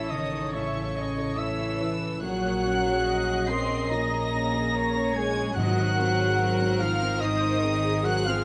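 A floating, sul tasto symphonic violin section carries the high melody of this hopeful, tender cinematic film-score excerpt at a rubato 72 BPM in 4/4, shadowed by a clear, distant oboe, a hollow silver concert flute and a soft background violin section, while a woody viola section and a felt-muted upright piano with audible action noise accompany, a mellow French horn section holds sustained chords over a dark double bass section and a rich cello section, and a very quiet timpani enters at 5.6 s, set in light reverb with close, detailed sound as the harmony moves from A through Gbadd9/Bb to Abadd9.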